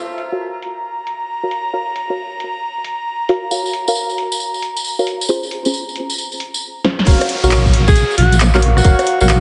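Deep, mellow chord stabs with chorus and delay open this skippy, bouncy two-step UK garage excerpt in Eb minor at 135 BPM, with swung 16ths, joined by an airy, breathy pad under a filter sweep and sidechain pumping, and a punchy analog drum machine of bongos, handclaps, hi-hat, rim click and a filtered snare set in a large room, with a jingly tambourine arriving at 3.5 seconds. After a drum fill, the drop lands at 7.1 seconds with a tight, layered electronic kick, an up-front, dark wobble bass and a downlifter, and a whispered, intimate alto saxophone with vibrato and delay adds a jazz-style solo line from 7.9 seconds over a rootless Ebm9 chord. The whole mix has light reverb and a heavily compressed, radio-like sound.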